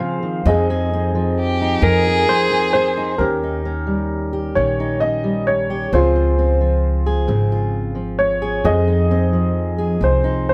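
Melancholic and heartbroken, this acoustic folk-pop ballad in 6/8 sets a clear, slightly detuned upright piano melody with long sustain over a dark, fingerpicked steel-string acoustic guitar, while a clean electric guitar adds tremolo-tinged arpeggios in the opening moments. A woody, growly pizzicato upright bass joins at 0.5 s and sits up front, and from 1.4 s to 3.2 s a single bowed violin, rich yet distant, sings an expressive second line with vibrato and portamento. Close, detailed microphones and little reverb give the recording an intimate, present sound.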